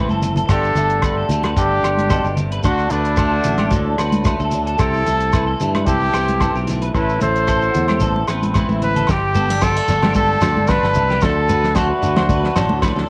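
Highlife guitar band music in G major at 112 BPM, sunny and joyful, this cut from a longer piece opens on a drum fill from a dark, fat-snared soul kit before a breathy, whispered trumpet carries the melody up front from 0.5 seconds, shadowed until 8.2 seconds by a clear alto saxophone line in the background. Underneath, a boxy acoustic guitar picks swing-style accompaniment, a twangy, slightly broken-up electric guitar plays arpeggios through ensemble chorus and analog delay, and a growly fingered electric bass anchors the chords. Congas, a grainy shekere and ringing agogo bells fill the percussion, with a second drum fill at 8.6 seconds leading into the closing section, all captured as a cozy home cassette recording with light small-room reverb.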